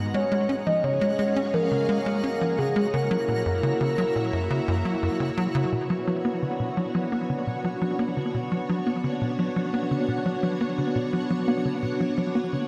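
Drenched in a huge ambient reverb, this expansive, hypnotic fragment of sequencer-driven space music at 86 BPM in 4/4 sets a tight, punchy sawtooth sequencer bass riff up front beside lush, vintage string-machine chords with ensemble chorus, while a twinkling granular FM texture shimmers high above and a soft, round octave-layered synth lead with phaser and delay carries a dark melody until 5.0 s, as the harmony moves from C# and F#7 to Bmadd9 and settles into B minor at 5.7 s.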